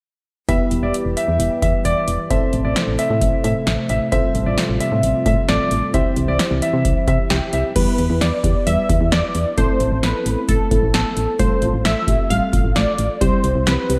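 Starting at 0.5 s, a clear baby grand piano with analog delay rides over a warbling FM electric piano with phaser, a shimmering chorused pulse-width pad, a punchy, round FM bass and an electro analog drum machine with deep kick and metallic hats in this driving, nocturnal synth-pop passage, until a nasal, funky polysynth comp with chorus and delay takes the melody up front at 7.3 s and a soft, round pluck adds background arpeggios from 7.8 s, everything set in a dreamy, reverb-soaked mix.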